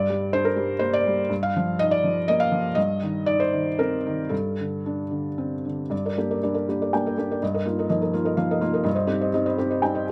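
In a rubato 3/4 that drifts between 110 and 128 BPM, this wistful, melancholic fragment of neoclassical minimalist piano in G minor is played by a solo felt-muted upright, heard intimately and up front with its soft, mellow tone, vintage character and audible action noise. Spanning G2 to G5, the piano moves through Gm, Ebadd9/G, Cm/G and D5/G over a steady G in the bass, then returns to the same progression at 5.9 seconds. A slapback echo and light reverb surround the piano, and a faint mains hum sits beneath this outdoor recording.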